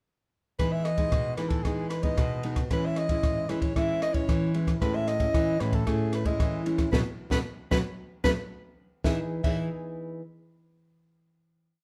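A straight samba groove in four drives this short, playful samba and choro piece, set by a compact cocktail drum kit that sits up front with a smooth, rolled-off sound, a high-tuned snare, a punchy kick, rim clicks, ride and crash. One nylon-string guitar fingerpicks a samba bass figure, while a second, darker guitar plays thumb bass and syncopated plucked chords through Emaj7, C#m and Amaj7, and a breathy, close-miked soprano saxophone carries a jazz-style melody of motif-based period phrases with vibrato. The band accents together from 6.9 seconds, then lands on a final Emaj7 chord at 9.0 seconds, inside a moderate large-studio reverb.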